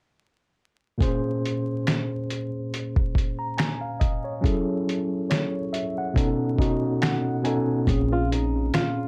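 A worn, slightly out-of-tune tine electric piano anchors this hazy, nostalgic lo-fi hip hop excerpt as accompaniment, its mellow chords lightly overdriven, filtered and bathed in plate reverb as if heard through built-in speakers. It moves through Bbm9, Gbm7 and B9 at a relaxed 70 BPM in Bb minor, with a swung sixteenth-note feel and a piano fill arriving at 6.2 seconds. Alongside it from 1.0 seconds, a dusty soul sampler-style kit of finger snaps, hi-hat, thumpy kick and fat snare sits up front, compressed, gritty and tape-toned with vintage 12-bit character. At 7.9 seconds the music returns to Bbm9 as a pizzicato upright bass with steel strings adds a brief, woody low Bb. A dark, boxy flamenco guitar then slips in near the close, thumb-plucked with audible finger squeak, filtered and reverberant. A small room's moderate ambience and vinyl crackle wrap the whole mix in a dusty haze.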